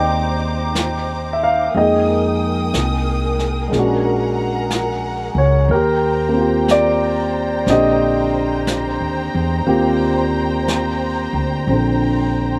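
Late-night and intimate, this swung jazz ballad fragment sets a dark, mellow baby grand piano up front over a woody pizzicato upright bass and a lush, bowed string section holding smooth sustained chords through Cm9, Fm11, Bb7alt and Eb6, while a distant, roomy brush kit on snare and hi-hat joins at 0.8 seconds in a dry mix.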